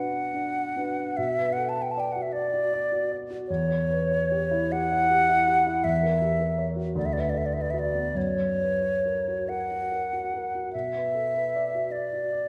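A hollow, silvery concert flute carries the melody, its pure tone shaped with vibrato and tongued notes, sitting close and up front in the upper register. Beneath it, a dark grand piano supplies the accompaniment, its deep bass giving the duo a solemn weight. This is a melancholic romantic classical piece in a compound metre, taken slowly and with free, breathing rubato. The harmony passes from the minor home chord through a diminished chord at 3.5 seconds and a dominant seventh before settling back onto the home chord at 10.7 seconds. A lush concert hall reverb surrounds both instruments, lending the short fragment, cut from a longer work, a spacious, mellow glow.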